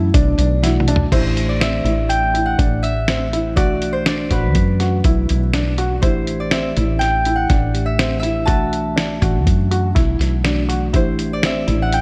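A muffled, compressed lo-fi drum kit with a thumpy kick sits up front in this driving, brooding progressive instrumental in 5/4, joined by a round, woody fretless bass with lush chorus, a dark baby grand playing mellow arpeggios with audible action noise, a bell-like tine electric piano with slapback echo that opens with a fill as the drums add their own fill by 1.1 seconds, and a bright, ringing, fingerpicked concert harp carrying the melody over alternating Bm7 and Am7 chords in light digital ambience.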